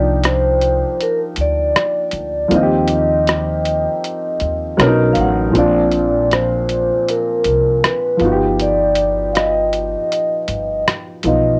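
Lo-fi hip hop with a mellow, dreamy swing, where a ringing soft-mallet vibraphone with slow motor vibrato and plate reverb carries the melody over woody upright piano chords softened by cassette tape, a thumpy pizzicato upright bass with gut strings, and a muffled, compressed sampler-style kit of hi-hat and rim click whose kick drops out at 10.1 s, the whole captured in a small room on a home cassette recording.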